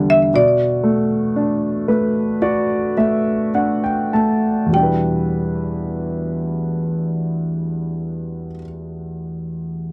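A dry, close 1970s-style studio sound with light reverb frames this heartbroken, longing pop ballad fragment in E minor at 49 to 60 BPM, where a bright, woody marimba struck with hard mallets carries the melody through a slapback echo until 8.5 seconds, while an intimate, up-front concert grand piano with deep bass and audible action noise accompanies, adding a fill from 1.4 to 4.7 seconds as the tempo slows and the harmony moves from Bm7 to Em7 at 4.7 seconds.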